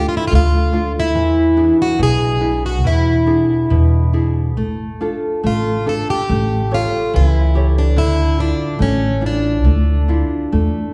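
A picked, plugged-in twelve-string acoustic guitar carries the melody from the first moment, joined at once by a fingerpicked nylon-string guitar and a pizzicato upright bass in this short excerpt from a longer fado-style ballad. The mood is longing and mournful, with a rubato feel over a 2/4 metre, and the tuning sits a little below standard pitch. The twelve-string has a full-bodied, shimmering, octave-doubled dreadnought tone and sits up front. The nylon-string guitar is small and close, with audible finger squeak. The upright bass lays down a woody, dark, thumpy gut-string foundation, and the harmony moves from Dm through E7, Dm/A and A7 before settling on Dmadd9 at 8.0 seconds, all within a wet recital hall reverb heard from further back in the room.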